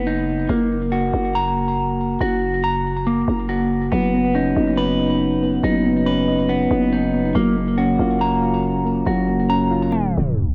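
Cassette home-recording character, light reverb and a digital ambience frame this dreamy, wistful hip hop fragment, cut from a longer piece, at 140 BPM in a half-time feel in F# major, ending in a tape stop at 9.9 s. A twangy, slightly broken-up electric guitar plays compressed, fingered arpeggios up front through a low-pass filter, tape echo and cassette colouring, over a growling, buzzy 808-style bass that sits on F#1 with a fast attack and decay. At 3.9 s, soft, round electric-piano-like synth keys enter with chorus and a dark filter sweep as the chords move from F# to Badd9/F# and then F#maj7.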